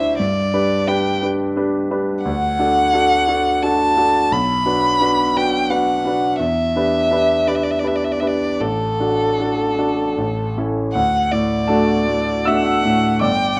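Classical romantic duo in D major, tender and warm, moving in a rubato 3/4 at roughly 75-89 BPM, where a rich, expressive solo violin sings the melody with vibrato and portamento over a bright, brilliant grand piano accompaniment of smooth, vintage tone and long sustain, both up front throughout this 13.6-second excerpt, set in a moderate large-studio reverb with a dark production as the harmony moves from G through Bm and Em7 to A before settling on D at 10.9 seconds.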